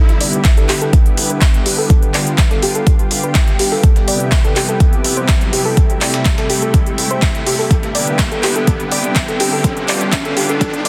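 Emotional and bittersweet, this 124 BPM progressive house build-up sets a lush, detuned unison pad holding sustained chords against soft, round pluck arpeggios with dub echo, both pumping to the sidechain, while an up-front deep electronic kick enters at 0.4 seconds over a deep house kit of handclaps and smooth hats, a very quiet gritty sampler-style kit of hi-hat and snare, a barely audible tight sequencer bass, and a background riser and filter sweep running across chords that move from Em7/A through G7/A, Cmaj7/A and Am7 and back, in a dense, heavily limited mix with light reverb.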